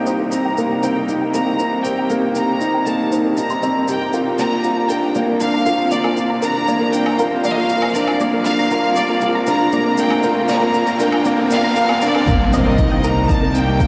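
A felt-muted upright piano, close and mellow with audible action noise, plays a riff while a clear, biting chamber violin section carries the melody over a blurred granular cloud pad and a very quiet, rich cello bass, all in C minor at 118 BPM with an intimate, moving feel. A soft, round pluck adds dark, gritty arpeggios, shaker and woodblock tick along, and filter sweeps on the pad, pluck and violins build the tension as a riser joins at 5.9 seconds. At 12.3 seconds the drop arrives with an impact and a deep, tape-warm electronic kick, all bathed in a dreamy cathedral reverb in this short piano and strings electronica fragment.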